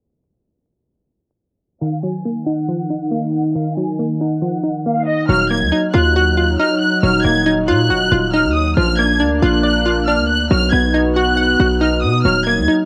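At 1.8 s a dark, ominous hip hop groove opens in a half-time feel, with a bowed violin section, a hollow square-wave pluck and a warm analog pad all arriving together while a filter sweep runs through the opening until 5.3 s. The violins carry the melody up front, their lush ensemble tone shaded with vibrato and portamento and given a worn cassette-tape colour. Beneath them, the bright, bouncy pluck, detuned and edged with ring modulation, plays accompaniment through a chorus, and the slow-attack sawtooth pad holds sustained chords, also chorused. At 5.3 s a punchy, heavy 808-style bass drops in with a fast attack and decaying tail, sitting up front as the harmony moves from Ebmadd9 through Bb and B before returning to Ebmadd9 at 12.2 s. The whole mix has a lo-fi, home-cassette character, muffled by a low-pass filter, dusted with vinyl crackle and set in light reverb, and this excerpt is cut from a longer piece.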